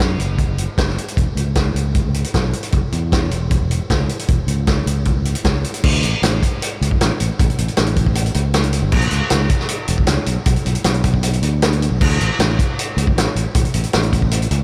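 Fingered electric bass and a vintage drum kit start together at the top of this indie rock excerpt, setting a moody, restless tone in a straight 4/4. The bass sits low, moving between E1 and F#2 with a bright, direct and amped electric sound. The acoustic kit is captured up front in a studio room, mid-forward and warm, with dark cymbals, a rolled-off top, a medium-tuned snare and a tight kick, while crash, hi-hat, kick and snare all feature. At 5.8 seconds the music moves into a new section, and both parts carry on through to the cut at 14.6 seconds. A light reverb gives the pair a touch of space.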